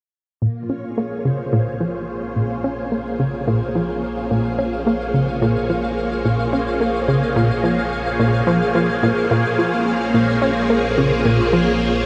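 Ambient, sequencer-driven space music in Bb minor at 108 BPM, this cosmic, mysterious fragment cut from a longer piece rests on a single Bbm7 chord from 0.4 seconds. A lush, bright string machine holds phased, chorused ensemble chords up front, while a punchy, funky plucky analog bass riff runs through analog delay and a filter sweep until 11.7 seconds. A deep, round sub bass fades in beneath, and a detuned, pulsing gated texture shimmers high above with chorus and its own reverb, all set in a huge, wet ambient space with cassette-tape colour and lossy compression artefacts.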